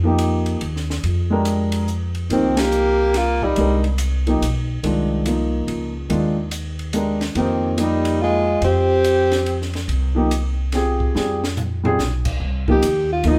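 Cool and intense, this modal jazz piece swings in 3/4 as an up-front warm grand piano and a woody pizzicato upright bass open together, joined by a dry cocktail drum kit with dark cymbals, a high-tuned snare and a punchy kick, while a mellow alto saxophone with scooped notes and vibrato carries the melody over a subtoned tenor saxophone line in short phrases from 2.3 s, marked by a band accent at 2.5 s and later a drum fill before the alto returns at 12.7 s, this time apart from the tenor, the whole band playing live in one room with a moderate large studio reverb.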